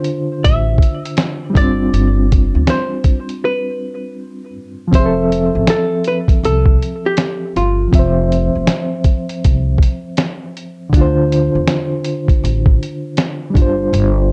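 A lazily swung 4/4 groove from a muffled, pitched-down sampler drum kit with a thumpy kick, fat snare and hi-hat, roughened by 12-bit grit and sitting up front, drives this hazy, melancholic lo-fi hip hop fragment, with a woody pizzicato upright bass joining at 0.5 s and a break arriving at 3.4 s. A reedy electric piano with fast tremolo, a low-pass filter and plate reverb, present from the very start, carries the chords from Dm7 through G7sus4 to a long Fmaj7 stretch. Above it, a dark, clean, picked hollow-body jazz guitar plays the melody through a low-pass filter, analog delay and plate reverb from the opening until 10.5 s, all within a dusky, lightly reverberant mix.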